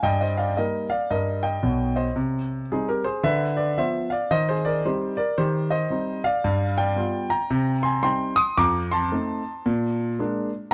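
Close, detailed microphones and little reverb place a warm concert grand piano up front, so the intimate sound carries audible action noise and a deep bass reaching down to Cb2. This playful, exuberant stride piano jazz moves at 112 BPM in 4/4 with a swung eighth-note feel, tuned to A4 = 444 Hz, and the lone piano plays throughout the 10.7 seconds. The harmony runs through Eb/G, Cm, Bdim/D and G7 before turning to F7 and Bb7 at the close of this passage cut from a longer piece.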